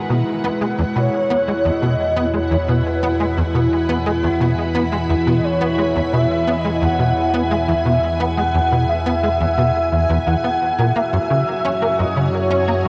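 Cosmic and luminous, this short cut from a longer piece of ambient, sequencer-driven space music moves in a straight 4/4 pulse. A lush, vintage string machine opens the piece with sustained full-ensemble chords under ensemble chorus, sitting up front and shifting from Eadd9 to F#7 at 11.0 seconds. A tight, punchy sequencer bass enters almost at once, driving a nasal, plucked sawtooth-and-square riff with chorus and delay, while an expressive synth lead joins at 1.0 seconds with a smooth, dark melody shaped by vibrato and delay. From 1.4 seconds an analog drone hums low beneath them, evolving with pulse-width modulation and tube saturation. The whole mix floats in a huge, wet reverb and carries the worn, warbling pitch drift of old cassette tape.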